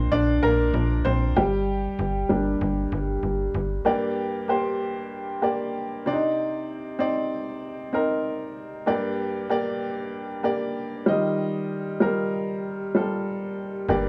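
Piano-driven pop in G minor at 96 BPM in a straight 4/4, with an earnest, dramatic mood, cut from a longer piece. A clear, woody upright piano sits up front and carries the accompaniment throughout, spanning G2 to Eb5, and takes a solo in the opening section. A slap-like FM bass with a snappy, metallic, digital fast attack that then decays also sits up front in the low register around G1 to Bb1, dropping out at 3.8 seconds and returning briefly at 13.9 seconds. The harmony moves from Bb to Gm, then through Cmadd9, back to Gm and on to Ebadd9 in the longer second section. A moderate studio reverb and small room ambience give the sound a compact sense of space.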